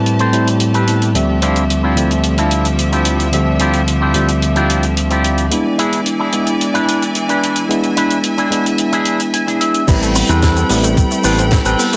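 A tine electric piano sits up front in this sensual, groovy nu-disco excerpt, its clean tone pumping against the beat with tape echo as it moves through Am9, Dm11 and E7 over biting, distant symphonic strings and a dry funk kit with a high-tuned snare. A twangy envelope-filtered guitar riff joins at 0.2 seconds, and a clean guitar fill leads into the drop at 9.9 seconds. There a thumpy electronic kick, a fat, detuned sawtooth bass with tube saturation and very quiet, wave-folded pluck arpeggios arrive, all in a small, lightly reverberant room.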